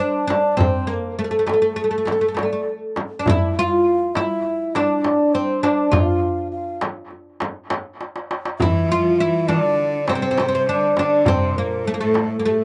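Dry and close with a dulled top end, this outdoor fragment of a stately Turkish makam ensemble piece in D makam nihavent moves at 203 BPM in 9/8, with a woody, fretless oud carrying the melody up front over a crisp metal-shell darbuka and a frame drum in the background, a breathy, hollow low ney tracing a second line behind, a drum fill at 8.0 seconds, and a biting cello with vibrato joining at 8.6 seconds, the oud, ney and cello each touched by slapback echo.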